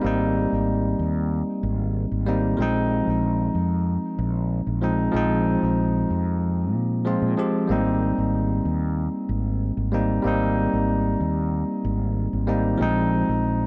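A straight 4/4 groove at 94 BPM sets an unhurried pace for this smooth, relaxed sunset chillout piece in Ab major, cut from a longer work and tuned to A4 = 442 Hz. A bell-like tine electric piano, bright and clean with a digital delay, plays the accompaniment up front while a fretless electric bass, amped and direct, holds the low end from start to finish. The harmony moves between Abmaj9 and Bb9sus4, and a moderate plate reverb with a 3.5-second tail gives the dark production a soft glow.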